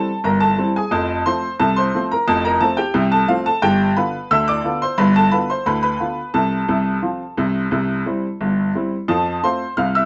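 In a straight 2/4 at 88 BPM, this playful, cheerful ragtime fragment in F major, cut from a longer piece, features a solo upright piano that sounds woody, worn and slightly detuned yet brilliant and up front, ranging from F1 to F6 over chords moving from C7 to F, G7, F/C, C and back to F across 10.1 seconds, captured live in a room with moderate ambience and a softened top end.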